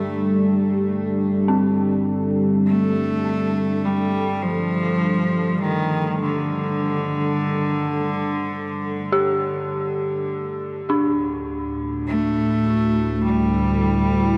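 At a slow, straight 51 BPM in 4/4, this cavernous, desolate dark ambient drone opens on a moody, detuned pad holding Gsus2 beneath an earthy, nasal cello melody with light vibrato and tape echo. An eerie, inharmonic synth bell enters with arpeggios at 1.5 seconds, and after the harmony settles on D5 at 10.9 seconds, a wave-folded, warbling drone with moving overtones joins low and up front at 11.4 seconds. Everything sits in a deep cathedral reverb, and this short passage is cut from a longer piece.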